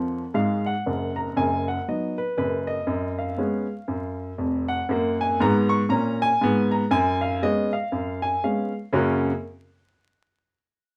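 Exuberant and playful, this short stride-piano excerpt cut from a longer jazz piece swings along in 4/4, with a lone upright piano opening on a quick fill before settling into a chord progression that moves from the home chord through B over F# and a dominant seventh over an F# bass. The piano sounds woody, polished and up front, ranging from deep bass to bright upper notes, and it carries the excerpt on its own, falling silent at 9.3 seconds. A moderate studio reverb and a layer of vinyl crackle give the recording a vintage patina.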